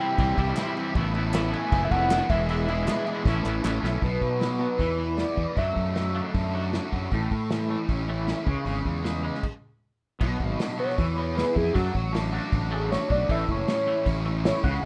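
A screaming, gritty sawtooth synth lead with vibrato carries the melody and returns at 10.8 s for a solo in this wistful, upbeat 156 BPM indie rock excerpt, over an up-front fuzz guitar riff, a twangy background electric guitar with harmonic tremolo, a growly overdriven fingered bass, a dark small-room acoustic kit played with bundle sticks, and hollow group handclaps from 0.6 to 3.7 s, with a brief stop at 9.4 s in a rough home demo mix with light reverb.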